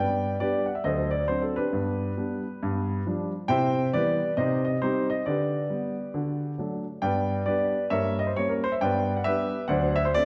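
A solo grand piano, natural and up front, plays playful, exuberant stride jazz with a swung feel, spanning from D2 up to G5. The harmony moves briskly through bright turns such as Cmaj7 darkening to Cm, then a Gdim before settling toward D7. A lush recital-hall reverb surrounds the piano in this short excerpt cut from a longer piece.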